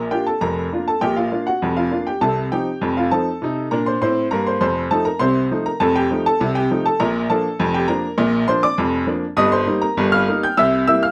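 A clear, woody upright piano carries this lively, playful ragtime on its own for the full 11.1 seconds, spanning from deep bass to bright high notes in a straight two-beat feel. Its smooth, vintage tone sits up front in a light reverb, and the harmony moves from Bb through F7 and back, closing on Eb/G and C7 as the passage is cut from a longer piece.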